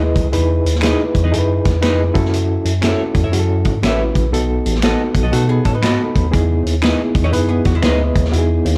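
A swung 120 BPM groove in 4/4 drives this uplifting, danceable slice of uptempo 1960s-style soul in E major, with a vintage drum kit of tight kick, medium-tuned snare and hi-hat sitting up front from 0.2 seconds, while very quiet finger snaps add a touch of live room. A bell-like, bright tine electric piano carries the bass line, direct and forward, and an overdriven reed electric piano through a combo amp supplies gritty, reedy accompaniment shimmering with fast tremolo, breaking into a short fill at 5.6 seconds. A clean electric guitar with subtle chorus plays picked stabs, and a compressed hollow-body archtop guitar, miked and amplified, plays a riff that sounds briefly at the start and returns at 5.3 seconds. The harmony moves from Emaj7 through F#m7 and B7 before settling back on Emaj7. The production is dark and dry, with little reverb, and the drums' rolled-off top gives the cut a vintage character.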